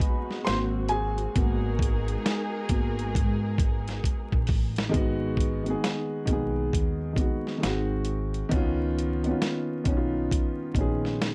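Vinyl crackle and light reverb frame this reflective, melancholic lo-fi hip hop fragment, cut from a longer piece, moving at 67 BPM in 4/4 with a swung sixteenth-note feel in G# dorian. An intimate, vintage-toned upright piano with audible action noise, cassette tape colour and plate reverb takes a solo until 4.9 seconds, over lush, distant bowed strings with vibrato that stop at that point, a gritty, compressed sampler-style drum kit with a thumpy kick sitting up front, and a woody pizzicato upright bass that enters at 0.5 seconds. A drum fill from 4.0 seconds leads into the second section, where the piano, bass and drums carry on through chords moving from G#m7 to G#7 and C#9.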